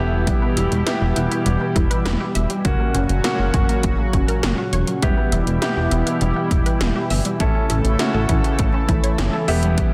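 Densely limited with a light reverb, this melancholic yet driving synth-pop excerpt at 101 BPM sets a shimmering, bright pulse-width pad and an intimate concert grand piano with audible action noise over a dark, glossy chorused synth bass and punchy 80s electronic drums with gated snare and metallic hats entering at 0.3 seconds, while a juicy, squelchy blip pluck plays chorused, delayed arpeggios in the background across chords moving from Em to F# and A.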